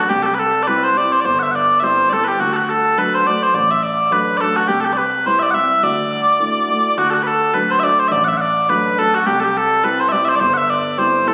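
A brisk 210 BPM in 4/4 drives this rollicking, bright Celtic folk excerpt, its eighth notes carrying a light swing, all in D mixolydian with the tuning sitting slightly sharp at A4 = 441 Hz. Small bagpipes carry the melody up front from 0.0 to 11.3 seconds, their mellow, sweet tone continuous and touched with vibrato, dressed in plate reverb and tape echo as they range from F#4 to F#5. Beneath them a dark grand piano supplies accompaniment low in the mix, its worn, intimate sound marked by short sustain and audible action noise. The harmony moves between C, D and Dsus2, with the same section played twice, the repeat starting at 7.0 seconds. The whole take, captured on a phone in the room, is bathed in a wet studio reverb and a club ambience.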